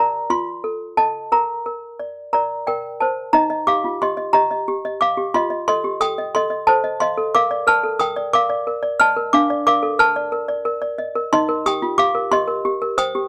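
Dreamy and innocent, this short classical lullaby for solo toy piano moves in 6/8 at 60 BPM, counted in dotted quarters, in B-flat major. The toy piano plays alone for the full 13.3 seconds, ranging from D4 up to F6 with a clanky, bell-like tone from its plastic hammers and a slightly out-of-tune character. Close-miked and up front, it sounds dry yet full, set in a close 1970s-style studio with a touch of light reverb. A brief opening section gives way at 3.3 seconds to a longer second section, the harmony moving from F7 to B-flat and on through E-flat, F7, B-flat and B-flat over D, before settling on a Cm7 over E-flat. The passage is cut from a longer piece.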